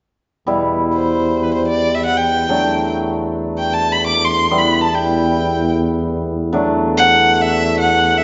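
The music moves in free time, unbound by a steady pulse, in this short klezmer excerpt in E minor that feels festive and soulful at once. A hammered dulcimer and a warm tuba begin together at 0.5 seconds. The dulcimer sits up front with a shimmering, ringing acoustic tone in its accompaniment role, while the tuba holds a low E with vibrato and a jazz-style lilt beneath it. At 0.9 seconds a lone bowed violin enters with the melody, played sul tasto with vibrato, its tone dark and woody and placed close and forward in the mix. The harmony alternates between E minor and D over an E bass, and the whole passage rings out in a reverberant church or concert hall, whose softened top end gives the sound a mellow, rounded glow.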